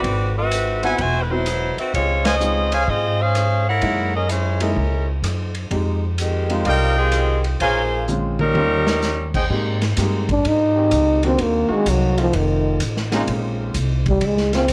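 A swung 4/4 groove from a vintage drum kit, with dark cymbals and a boomy kick, and a woody, growly pizzicato upright bass drives this sultry big band swing excerpt, while an intimate, slightly detuned upright piano accompanies underneath. A bright saxophone section carries the melody, punctuated by clear trumpet section stabs and a band accent at 2.2 seconds, until a drum fill leads into a raspy, gritty trombone solo with scooped notes at 10.3 seconds. Behind the solo, a tight, punchy trombone section holds sustained chords with light vibrato in the background, all set in light studio reverb.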